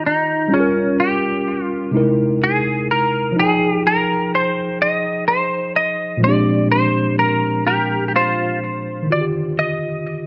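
A clean, fingered semi-hollow electric guitar takes an intimate, compressed R&B solo up front from the first moment, colored by analog chorus and tape echo, while a worn, slightly out-of-tune tine electric piano, lightly overdriven through its built-in speakers and also treated with tape echo, accompanies it through Ebmaj9, Gm7b5, C7alt, Fm9 and Bb13 in 6/8, until the solo closes at 9.1 seconds as the harmony returns to Ebmaj9 in this warm, echo-heavy mix with light reverb and digital ambience.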